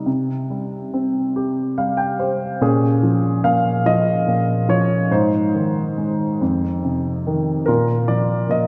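A worn, warm baby grand piano carries this short classical solo on its own, sitting up front with a long sustain across a range from F2 to G5. The mood is wistful and dark, moving in a slow, rubato 6/8 at 48 BPM counted in dotted quarters, in Bb dorian with the piano tuned to A4 = 442 Hz. Between 1.4 and 2.6 seconds the piano adds a brief fill before the harmony settles onto Bbm7, then passes through Ab and F5 to close on Bb5 at 7.7 seconds. A wet church reverb, running about 3.3 seconds, surrounds the instrument with the resonance of a church or concert hall. The passage is lifted from a longer piece and lasts just under nine seconds.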